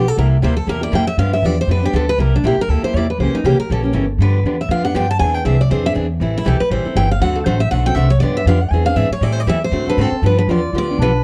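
A bright, full-bodied picked steel-string acoustic guitar leads this charming, lively slice of gypsy jazz swing, taking a solo from the opening to 10.2 seconds with a touch of plate reverb and audible finger squeak. At a brisk 239 BPM in a swung 4/4 in G mixolydian, a second picked steel-string guitar with fresh strings sits up front in the accompaniment, sketching changes such as C7, C#dim7, Eaug7, Am7 and D7 before resolving to G7. Underneath, a woody, thumpy upright bass with gut strings plucks a dark, prominent foundation. At 9.9 seconds a breathy clarinet slips in with a whispered, subtone second line, its soft attack, scooped notes and light vibrato sounding distant and roomy. The whole excerpt carries the worn, warbling pitch drift of old cassette tape and a light reverb, and it is cut from a longer piece.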